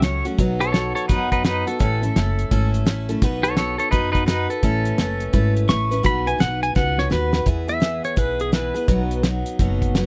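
A clean, fingerpicked pedal steel guitar leads from the opening with slides and volume swells over a bright, full-bodied picked dreadnought acoustic guitar, a woody pizzicato upright bass and a cloth-damped, thuddy drum kit with a fat snare and gritty, saturated tone, giving this easygoing, down-home honky-tonk country piece a swung 169 BPM feel, captured close and dry, with a drum fill at 6.8 seconds before the steel falls away at 9.2 seconds.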